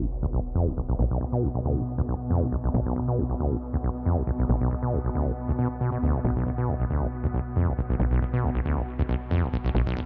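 A dry, low-pass filtered sound with a filter sweep running throughout opens this dark, intense techno fragment, cut from a longer piece, as an electronic sub drop lands as an impact in the first second. Up front, a squelchy, resonant acid saw bass plays the riff through cassette tape and delay, while a punchy, nasal sequencer bass drives underneath in the background. Behind them, a swarming drone of detuned, warbling sines with its own reverb holds a tense, evolving bed.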